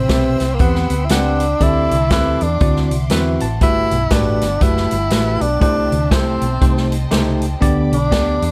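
A breathy tenor saxophone carries the melody up front, its subtoned, vibrato-touched jazz phrasing giving this uptempo gospel piece a reverent, hopeful glow. Beneath it, a bell-like tine electric piano supplies bright, clean accompaniment and adds a short fill at 2.9 seconds. A round, punchy hollow-body electric bass anchors the low end with a dark, amped tone, while a swinging big-band drum kit enters at 0.1 seconds, its hi-hat, medium-tuned snare and boomy kick sitting up front with a natural room sound. Set in the background, a lush bowed string section holds smooth, even sustained chords with gentle vibrato. The harmony moves from Cmaj7 through D7sus4 and D9 to Gmaj9, then passes through C6 and Cm6 before resting on G, in a brief swung passage cut from a longer piece.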